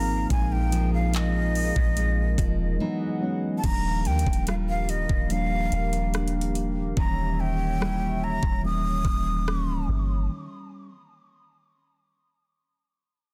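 A slow, straight 72 BPM trap beat of knocking kick, metallic hats, rim clicks, handclaps and crash anchors this tender, dreamy contemporary R&B excerpt in Eb major, where a deep, round 808-style bass sits up front beneath a breathy jazz flute melody with digital delay, mellow tine electric piano, a fingerpicked nylon-string guitar in the background, a hollow, detuned pad with chorus and sidechain pumping, and a very quiet, bell-like celesta that drops out at 3.2 s, all moving through chords from Bb7sus4 to Emaj9 at a brief break before settling on Ebmaj9 and Eb7b9 in a dense, heavily limited master.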